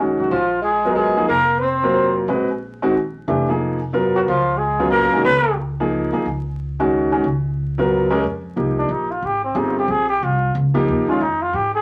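Modal jazz in a hypnotic, searching mood, swinging at 182 BPM in 3/4 over Bb phrygian before moving into F minor at 8.2 s, cut from a longer piece. An intimate grand piano with audible action noise sits up front beside a woody pizzicato upright bass, while a growling, raspy trumpet carries the melody in short phrases and a breathy alto saxophone with vibrato and scooped notes adds a lower second line until 5.6 s. The trumpet then solos to the end, framed by a short, wet club reverb and a layer of vinyl crackle.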